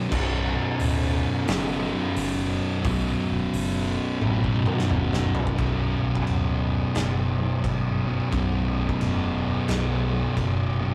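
Two thick fuzz guitars open this ominous, brooding stoner and doom metal excerpt on a B5 chord, one riffing up front and the other sitting in the background, as a round, overdriven hollow-body bass and an oversized, low-tuned acoustic drum kit join almost at once at a swung 88 BPM in 4/4. The kit pairs a punchy kick and medium-tuned snare with dark cymbals, hi-hat and toms, and its gritty, saturated sound pumps in a big room before a drum fill from 4.2 to 5.6 seconds leads into a new section. The whole take has the rough feel of a rehearsal-room recording, with tube saturation and a small room's moderate reverb.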